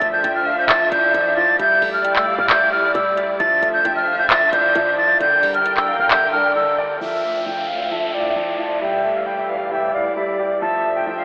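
A bright, breathy jazz flute sits up front over a soft, warbling flute-like synth line with chorus and tape echo, while a baby grand piano with long sustain and a lush, bowed string section with vibrato fill in the harmony. This melancholic, menacing half-time trap excerpt starts with electronic handclaps and metallic hi-hats carrying 12-bit sampler grit, plus a punchy, tight 808 bass set in the background; the drums drop out at 6.2 seconds and the bass at 6.5 seconds. From 7.0 seconds to 10.6 seconds an electronic downlifter sweeps through the closing passage, and the whole dreamy mix is soaked in huge ambient reverb with a telephone-like tone.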